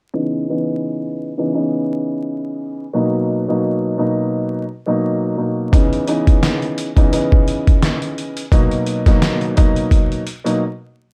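Dark, warm production with vinyl crackle and light reverb frames this reflective, gritty boom-bap hip-hop excerpt at 86 BPM with a light 16th-note swing in C# dorian, where a mellow, up-front grand piano under a filter sweep moves between C#m9 and Bmaj7 until a compressed, pitched-down, sampler-style trip hop kit with thumpy kick, medium-tuned snare and hi-hat, re-recorded in a large room, joins at 5.7 seconds, before both parts fall away for a short break at 10.6 seconds.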